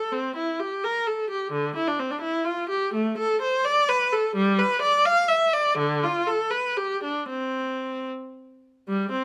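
A lilting 6/8 pulse, felt in dotted quarters at 74-88 BPM, moves with a gentle rubato that lets the phrases breathe. This short cut from a longer piece is a baroque-style suite movement for unaccompanied viola in C major, tuned to A4 = 438 Hz, and its mood is serene yet dance-like. A single bowed viola plays alone for the full 9.2 seconds, ranging from D3 up to F5. Its tone is clear, smooth and even, with vibrato, and it sits up front in the sound. A light reverb gives the solo line a touch of space.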